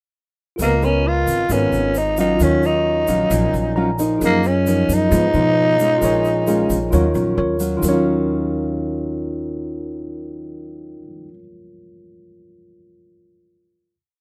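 Wistful and melancholic, this short bossa nova piece in Eb minor moves at 133 BPM, with a growling tenor saxophone carrying an up-front, breathy, raspy melody built from song-like motifs with scooped notes over a thumb-plucked nylon-string guitar, a woody pizzicato upright bass playing dotted root-and-fifth lines, and a grainy, distant egg shaker. A worn, slightly out-of-tune tine electric piano holds rootless chords through a combo amp and adds a fill at 3.5 seconds. As the saxophone and shaker drop out, the piece settles on a final Ebm9 chord from 7.8 seconds, with the electric piano ringing on alone until 14.0 seconds in light reverb.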